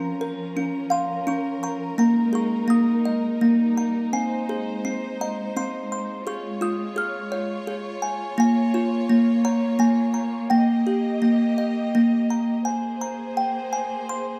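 A dark, warm production with moderate recital-hall reverb frames this tender, innocent children's lullaby excerpt in Ab major at 84 BPM in 3/4, where a delicate, tinkling, close-miked music box carries the bright melody up front while a softer, rich studio string section sustains smooth, bowed chords with vibrato beneath it, moving from Bbm through Db and Eb to settle on Abadd9 at 12.7 seconds.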